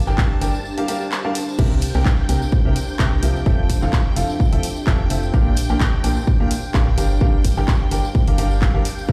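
A punchy kick with a light 16th-note swing drives this uplifting, feel-good piano house excerpt, where a clear, boxy baby grand piano riff with delay rides over a hollow, organ-like FM bass, a shimmering vintage string machine, an ethereal pad in the background, analog drum-machine handclaps, hi-hat and crash, and a soft tambourine, all moving through Gm7, C7, Fmaj7 and Bb6 in a big, reverberant room with sidechain pumping on the bass, piano, strings and pad, and a short break from 0.6 to 1.6 seconds.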